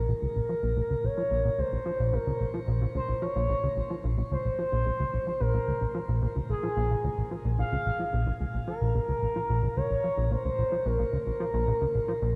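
A straight 4/4 pulse at 110 BPM drives this cosmic, expansive ambient excerpt in Bb minor, where a punchy, funky analog bass riff of sawtooth-and-square filter plucks, dressed in ensemble chorus and delay, sits under a smooth, mellow synth lead whose soft-attack melody sustains with vibrato through chorus, cassette tape, shimmer reverb and delay, all set in a vast, echoing cathedral space with a tape-worn character.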